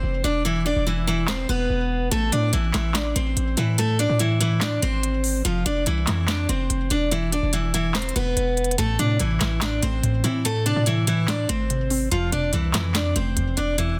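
A bright, up-front picked steel-string acoustic guitar carries the eerie, melancholic melody through delay in this trap cut at 144 BPM with a half-time feel in A harmonic minor, moving over chords such as Am and F while a punchy, heavy 808-style bass sits beneath. Electronic trap drums arrive at 1.3 seconds with a sharp snare, crisp hi-hats and handclaps, and at 8.8 seconds a warbling, lo-fi, detuned pluck joins as vintage-toned accompaniment colored by chorus and phaser. The sound is dense and heavily limited, set in digital ambience.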